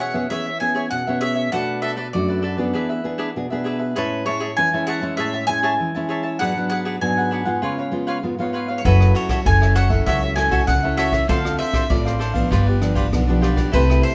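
A bright, double-strung bowl-back mandolin takes a picked solo up front over crisp cavaquinho and a full-bodied, fingerpicked nylon-string guitar in this joyful, sunny samba and choro passage, before a brush drum kit with a boomy kick enters at 8.8 seconds and a woody, thumpy pizzicato upright bass follows at 8.9 seconds, the band heard live together in one room with moderate studio reverb.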